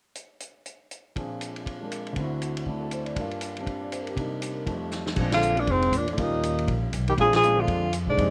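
Playful and relaxed, this brief cut from a longer small-group swing and bop piece in Bb mixolydian opens with a vintage drum kit, dark-cymbaled and punchy, at a brisk 239 BPM, adds an intimate grand piano with audible action noise at 1.2 seconds, and after a drum fill at 4.9 seconds brings in woody pizzicato upright bass, a mellow subtone tenor saxophone with scooped notes carrying the melody, and a breathy, whispered trombone with vibrato on the second line, punctuated by band accents over dry acoustics.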